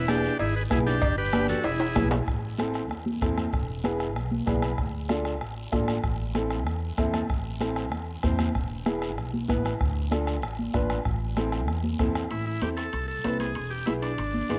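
This cumbia excerpt drives along in straight 4/4 at 192 BPM, with a softly beaten bombo in a live room, bright high-tuned congas played with soft hands and a raspy guiro setting a danceable pulse in A harmonic minor, while ringing cowbell and timbales join only at the opening and again from 12.3 seconds. An up-front, woody pizzicato upright bass anchors the low end throughout, and a clear upright piano carries the accompaniment with short fills over chords moving between Am, Dm and E. A buzzy vintage combo organ with light vibrato and a cassette-tape tint states the melody briefly at the start, then returns for the closing section as the bombo drops out at 12.3 seconds, all within a lightly reverberant home cassette sound.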